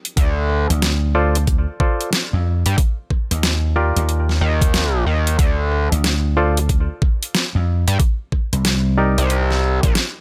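Swung sixteenths at 92 BPM in 4/4 drive this funky, playful glitch hop excerpt in D phrygian, where a knocking, overdriven electronic kick and a hard-driven dubstep drum kit with deep snare, bright hats and rim clicks sit up front beside a gritty, distorted sawtooth synth bass with ring modulation and oscillator sync, a round, punchy vintage slap bass, and a mellow, stringy clav playing stabs through sidechain pumping and digital delay over Dm7, Ebmaj7, Dm and Cm7, with little reverb on the mix.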